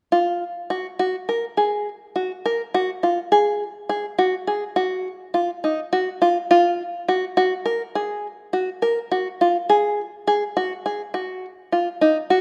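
This contemporary instrumental piece has a hopeful, shimmering mood, set in an uneven 11/8 metre at 207 BPM counted in eighths with a straight feel. An open-back banjo plays alone from 0.1 to 12.4 seconds, fingerpicked and sitting up front in the mix. Its tone is mellow yet twangy, with a plunky, percussive bite to each note, all kept within a compact range from Eb4 to Bb4. The instrument is tuned slightly above standard pitch, to A4 = 441 Hz. A moderate scoring-stage reverb with a 1.9-second decay surrounds the banjo with a soft halo of space, and the passage is cut from a longer piece.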